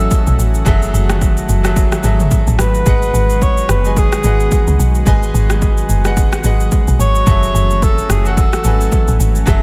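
Amapiano at 109 BPM with a late-night, soulful mood, this excerpt moves between F#m7 and G#m7 as a breathy, intimate alto saxophone carries the melody through a dub echo until 9.2 seconds. A bright, vintage grand piano plays the accompaniment over an airy pad that sits in the background with chorus and sidechain pumping. Up front, a woody, percussive log drum bass pairs with an overdriven deep house kit of punchy kick, rim click, shaker and toms, all set in an echo-heavy digital ambience.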